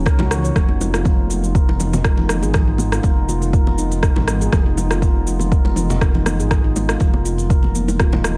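Earthy and warm, this afro house excerpt at 121 BPM with a light swing sets a deep, rumbling detuned saw bass and an overdriven, up-front electronic kick under a ringing, meditative handpan arpeggio with digital delay, while an overdriven rim click and cabasa ticks along and round low-tuned bongos, distant congas and a moody, nasal analog pad with chorus fill the background, the pad, bass and handpan all pumping to the sidechain over Ebm7 moving to Fm7b5.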